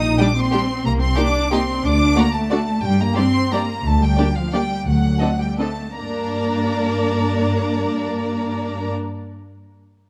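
Classical string music in a dark, sweeping three-beat rubato, this short cut from a longer piece sets a rich, focused violin melody over a second violin line and expressive viola accompaniment, with a lush cello section and soft-attacked, up-front double basses anchoring the bass in light reverb, as the bowed ensemble slows between 3.3 and 6.0 seconds before settling into a new section.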